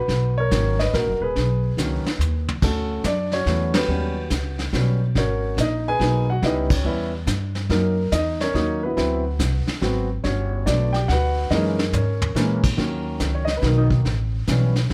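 Lightly reverberant and intimate, this relaxed jazz piano trio excerpt swings in three, with a concert grand carrying the melody through plate reverb, its action noise audible and its long sustain ringing, over a woody, thumpy pizzicato upright bass on gut strings and a small-room brush kit of dark cymbals and punchy kick that adds fills at 1.8 and 11.5 seconds before the piano takes a solo from 12.8 seconds.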